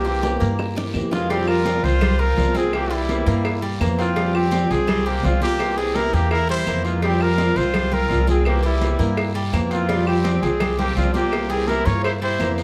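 Danceable and nostalgic, this short cut of Cuban son and guajira moves at a brisk 168 BPM in 4/4, set in F harmonic minor over a steady alternation between C7 and Fsus2. An intimate, breathy trumpet with vibrato and a soft attack carries the melody up front, with a brilliant second trumpet behind it, while a boxy, picked ladder-braced acoustic guitar with audible finger squeak and a metallic, double-strung tres playing arpeggios fill the middle, anchored by a dark, thumpy pizzicato upright bass. Bright, high-tuned congas, tight bongos with cowbell, a raspy guiro and woody claves sit in the background, with a drum fill from 0.6 to 1.3 seconds leading into the main section, all set in a moderate large-studio reverb.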